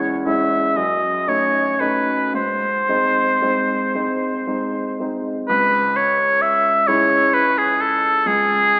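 An oboe with light vibrato and a smooth top sings an elegiac melody up front, while a vintage-toned grand piano plays a warm, smooth accompaniment beneath it in this solemn romantic classical excerpt in C# minor. The slow 6/8 pulse moves with rubato at 37-44 BPM, with harmony that passes from C#m/E through D#m7b5/F# to G#, then resolves to C#m as a new section begins at 5.5 seconds. A long, wet scoring-stage reverb surrounds the duo, and the whole recording carries an AM radio character.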